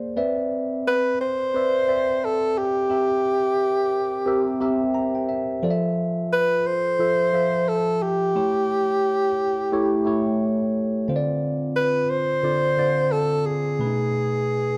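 Soul with a lush, romantic mood and a gently swung sixteenth-note feel, cut from a longer piece. A clean, direct tine electric piano colored by phaser carries the accompaniment from the start and adds a fill at 4.6 seconds, while a breathy alto saxophone enters at 0.9 seconds with a close-miked, jazz-style solo melody full of vibrato, soft subtone and slapback echo, both parts sitting up front. A moderate echo-chamber reverb and small room ambience surround them as the harmony moves through extended chords from Cmaj9 to B7.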